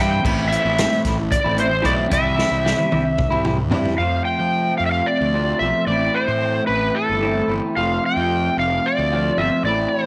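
Lightly reverberant studio sound frames this hypnotic, dark psychedelic rock clip in 7/8 at 223 BPM (eighths), where a bright, overdriven slide guitar with slapback echo carries the melody up front, a slightly broken-up electric guitar through a small old amp plays a phased riff, a round fuzz bass growls beneath over Am, C and F chords, and a vintage acoustic drum kit with dark cymbals and a punchy kick plays from 0.2 s, ending with a fill from 2.4 to 4.0 s.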